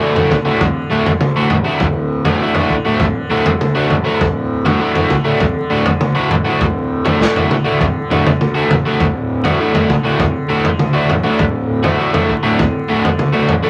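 A crunchy, overdriven electric guitar leads this dark, hypnotic psychedelic rock fragment, its double-tracked, picked riff sitting up front throughout. Beneath it, a softly plucked tanpura drone buzzes and shimmers in the background, while a fuzz-driven picked electric bass adds a punchy low end further back from 0.1 seconds. A breakbeat drum kit enters at 0.2 seconds with a tight kick, medium-tuned snare and toms, its saturated, gritty tone carrying a mid-forward character and a rolled-off top. The music stays on a single chord in a straight four-beat feel until it ends at 13.7 seconds. A modest small-room reverb and a layer of vinyl crackle give the whole recording a warm, aged patina.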